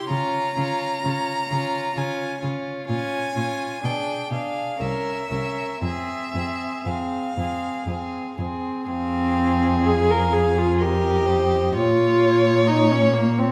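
A slow, melancholic and yearning romantic movement for string quartet in F minor opens with all four bowed voices almost at once, the cello joining at 0.1 seconds beneath the violins and viola. Moving at 58-66 BPM in 3/4 with a rubato feel, the passage states its opening idea and then begins it again at 8.9 seconds, as if cut from a longer piece. The clear first violin carries the melody with vibrato and a focused, distant tone, while the second violin adds a rich, smooth-topped second line. Up front and intimate, the dark viola plays the accompaniment with light vibrato, a soft attack and an airy bow, and the cello's expressive bass uses vibrato and portamento. The harmony travels from Db through Bbm7, Bdim7 and C7b9 to settle on Fm, later moving to Bbm, all set in a recital hall reverb that lingers for 1.6 seconds.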